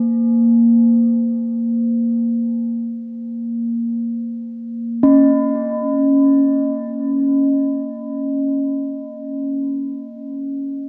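A dark, warm production sets a lone quartz singing bowl inside a huge, wet ambient reverb whose tail hangs for 6.9 seconds, so each strike seems to melt into the space around it. This brief excerpt of world meditative music moves in free time, and the mood is meditative and haunting. The bowl plays solo from 0.0 to 10.9 seconds, sitting up front in the mix with a pure, bright, ringing tone and a slow beating that shimmers within the sustain. It is struck with a wooden striker, and a tape echo trails its sound, adding repeats that blur into the reverb. Its range stays narrow, between Bb3 and Db4, keeping the focus on resonance rather than melody.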